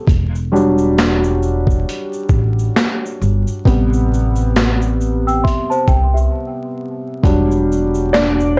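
Swung sixteenths in 4/4 drive this nostalgic, reflective lo-fi hip hop fragment, where a compressed, gritty boom bap sampler-style kit with a thumpy kick, high-tuned snare, hi-hat, shaker and handclaps sits up front beside a woody, dark pizzicato upright bass. A soft, intimate felt-muted upright piano carries the lead through cassette tape colour and a low-pass filter over Em7 and Am7, with a break from 6.3 to 7.2 seconds. A delicate, bell-like celesta, filtered and treated with tape echo, adds a sweet second line from 5.3 seconds, all within a dry recording dusted with vinyl crackle.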